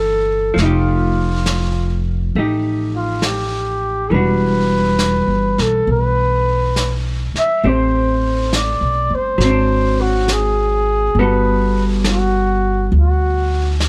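A dry excerpt of an intimate, tender jazz ballad at 68 BPM with a swung 4/4 feel, where a raspy, growling trumpet carries the melody up front over clean, compressed hollow-body electric guitar chords and a woody, thumpy pizzicato upright bass, while a muffled, lo-fi brush kit with snare and hi-hat enters at 0.6 s as the harmony moves through rich extended chords to a closing Gmaj9.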